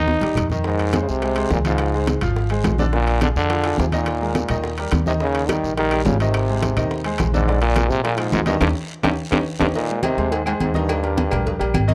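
A growling trombone leads this joyful, danceable salsa, its gritty, raspy tone sitting up front with vibrato and a punchy, pop-style edge as it carries the melody. The tempo is a brisk 211 BPM in straight 4/4, in Ab major, moving through chords such as Fm7, Dbmaj7, Bb7 and Eb7 and returning to Ab. A baby grand piano supplies sparkling accompaniment in an intimate, present sound with its action noise audible, while a dark, thumpy upright bass with gut strings plays pizzicato beneath. The percussion is dense: low-tuned congas with a thin skin, ringing metal-shell timbales and agogo bells that sound compressed and saturated, tight, high-tuned bongos and cowbell kept very quiet, a scratchy guiro, and woody claves that tap briefly near the start and return at 5.5 s. A drum fill opens the cut, and a band accent from 8.6 s leads into a new section at 9.8 s. The close, dry 1970s-style studio sound keeps the playing immediate in this passage cut from a longer performance.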